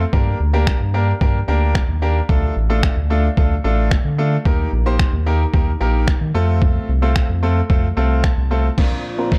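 Dance-pop with an energetic, bittersweet mood, cut from a longer piece, where a bright, intimate baby grand piano with audible action noise and a round, deep analog bass both pump against muffled, overdriven sampler-style drums with a thumpy kick, finger snaps and a crash, moving through Gm, Dm, Eb and F before a piano fill leads to a drum fill and a lush, vintage string machine entering at 8.8 seconds on Bbadd9, all set in dark digital ambience.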